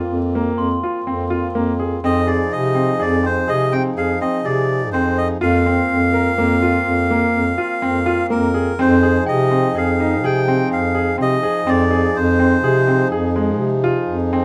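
Set in a straight, uneven 7/4, this restless, pensive fragment of contemporary chamber music pairs sustained chords from a breathing, airy harmonium with clear, intimate piano arpeggios carrying audible action noise, a mellow, soft-attacked bass clarinet up front on the bass line, a reedy, nasal melodica taking the melody from 2.0 s, and a dark, bell-like glockenspiel struck with soft plastic mallets ringing in the background, heard through close, detailed microphones and light reverb.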